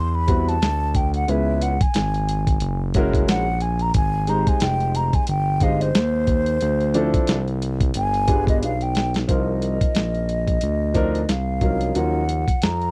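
A dry, close recording with a 1970s studio feel frames this smoky, nocturnal jazz-hop cut from a longer piece, where an airy, hollow silver concert flute with vibrato carries a solo from the start until 9.3 seconds over a woody upright piano with audible action noise and long sustain. Underneath, a sawtooth-and-triangle synth bass glides with portamento and vibrato, sitting up front beside a gritty, compressed, tape-warm sampler-style drum kit with a thumpy kick, medium-tuned snare and hi-hat, all in a lazy swung groove. A drum fill leads into the closing section, where the harmony turns darker on rich minor ninth and eleventh chords.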